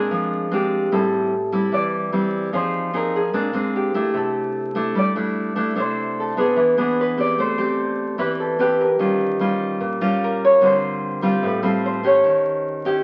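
Heard through the crackle of a very old 78 rpm record, with the top end dulled and a moderate studio reverb around it, this short excerpt from a longer bossa nova piece has a romantic, sophisticated mood. Up front, a warm, fingerpicked classical nylon-string guitar carries the accompaniment from its low register into the middle, with audible finger squeak, while a bright, ringing fingerpicked Celtic harp plays the melody in a narrow upper range. Rich extended chords such as Bb9, Am7 and C69 colour the first passage, and from 7.4 s the harmony moves through Am9, Eb9 and Dm7 before closing on a tense Eb7b9.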